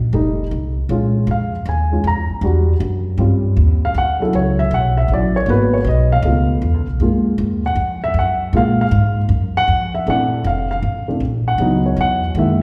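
Big band swing jazz at 157 BPM with a brassy, joyful mood: a dark, mellow baby grand piano solos up front throughout this cut from a longer piece, its intimate tone carrying audible action noise and short sustain, over a woody, thumpy pizzicato upright bass, moving through rich chords such as F7, Em9, C#7alt and A#maj9#11 in the wet bloom of a recital hall.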